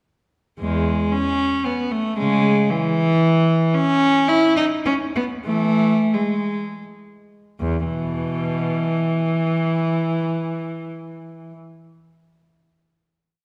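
A resonant church or concert-hall space with a long, wet reverb surrounds a single bowed cello placed up front, playing a complete baroque-style suite movement in E major, in free time and tuned to A4 = 441 Hz. The cello carries a flowing, radiant melody with a rich, reedy gut-string tone, light vibrato and a period style, ranging from E2 to E4 and filling out its line with double stops and spread chords. It begins at 0.6 s, slows from 3.0 s, and settles onto a final chord at 7.6 s that rings on in the room.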